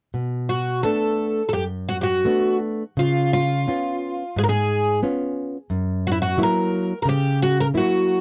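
Fado-style ballad excerpt, mournful and longing, moving in a rubato 4/4 at around 83-91 BPM, where a dark, woody fingerpicked nylon-string guitar with old strings accompanies from 0.1 s through Bm7, C#7 and F#7 while a bright, shimmering, octave-doubled twelve-string acoustic guitar with fresh strings carries the picked melody from 0.5 s, both placed up front in a dry, close 1970s-style studio sound with light reverb.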